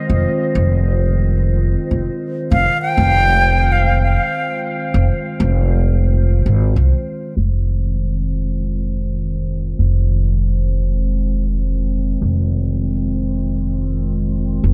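Spacious and meditative, this ambient dub excerpt in F minor moves at 99 BPM over an Fm7 chord, with a warbling, lo-fi tape-like pad holding dark, nostalgic sustained chords through chorus and its own reverb, a woody, thumpy pizzicato upright bass up front, and an airy silver concert flute with vibrato and dub echo appearing briefly from 2.5 to 4.6 seconds, inside a small room ambience, before a filter sweep runs from 7.4 seconds to the end.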